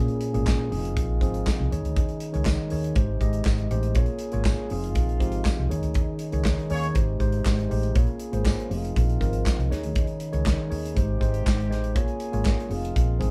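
Disco groove, danceable and sultry, built on a mellow tine electric piano comping over a looping four-chord progression, a dark, round hollow-body bass, and an up-front, polished drum kit with handclaps, hi-hat, tight kick and snare, while a soft-edged French horn section holds distant sustained chords, a jingly tambourine sits in the background, and a punchy horn section stab with octave doubling lands at 6.7 seconds amid a band accent, all in a lightly reverberant room.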